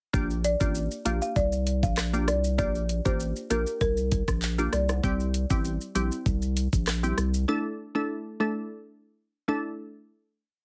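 Dry and heavily compressed like a radio mix, this sultry, bouncy dancehall piece moves at 98 BPM in 4/4, tuned to A4 = 436 Hz, and runs through a chorus with chords moving from Bb6 to C to Dsus2. A woody, rustic marimba played with medium mallets carries a syncopated hook with digital delay until 4.9 seconds. Around it sit a glassy, crystalline wavetable pluck with chorus and a filter sweep playing syncopated chords, a thick, saturated sub bass with slides, a sparse electronic kit with knocking kick, metallic hats and rim clicks, and soft maracas and timbale accents in the background, all of which stop at 7.5 seconds except the pluck, which rings on alone until 9.6 seconds.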